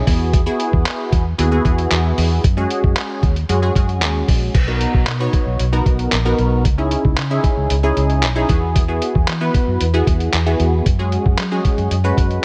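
The recording sounds dry and close, with little reverb around a compact dance-pop mix at 114 BPM in B major, a summery, euphoric fragment cut from a longer piece. A funky, detuned sawtooth polysynth opens at 0.0 s, its filter pluck and moving notch giving the chords an evolving shimmer, treated with chorus and sidechain pumping and sitting up front. A dark, foam-muted fingered electric bass joins at 0.1 s, round and punchy, also breathing with sidechain pumping. The lo-fi sampler-style drum kit is compressed, pitched down and muffled, its thumpy kick, hi-hat, handclaps and crash cymbal carrying a tape-warm, forward presence. The harmony moves through Eadd9 and F#sus2 before the second section at 4.5 s brings Bmaj7 and C#madd9, then returns to Eadd9 and F#sus2.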